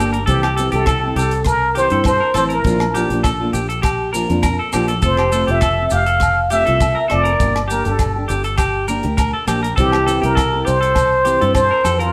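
A live, one-room sound with moderate stone-room reverb frames this carefree, danceable highlife guitar band at 101 BPM in straight 4/4, where an up-front plunger-muted trumpet plays a breathy, wah-wah jazz solo with vibrato from 0.3 s over a full-bodied fingerpicked steel-string acoustic guitar, twangy clean electric guitar arpeggios, a punchy foam-muted fingered bass, a dry, tight funk drum kit of hi-hat, kick and rim click, and background ringing agogo bells and grainy maracas, as the chords move from C through Bb, F and Gm back to C.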